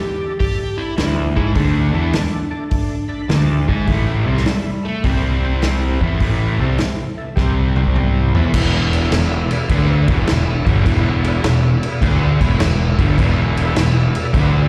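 Heard live through a venue PA with a touch of hall ambience, this swaggering, driving blues rock and southern rock excerpt swings at 103 BPM as a warm slide guitar carries the melody until 6.0 seconds over gritty, key-clicking organ chords with slow rotary and chorus vibrato in the background, while from 1.0 seconds a dark, double-tracked overdriven guitar riff and an up-front fuzz bass join a punchy, pumping vintage drum kit with dusky cymbals, which adds a fill alongside the organ at 7.4 seconds.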